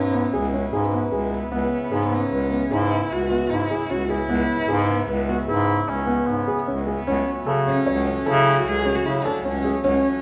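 Set in a straight 7/4 pulse, this hypnotic, urgent piece of contemporary chamber music, cut from a longer work, is led by a single close, woody cello, bowed sul tasto with vibrato. Beneath it, a reedy, breathing pedal harmonium holds sustained chords, a clear, vintage-toned bass clarinet carries the bass line up front, and a mellow concert grand piano with deep bass plays arpeggios. Between 5.3 and 6.8 seconds, a warm, distant flugelhorn adds a brief second line with light vibrato, just before the harmony shifts from C#m7 to F#m/C# at 7.1 seconds, all within a moderate scoring-stage reverb.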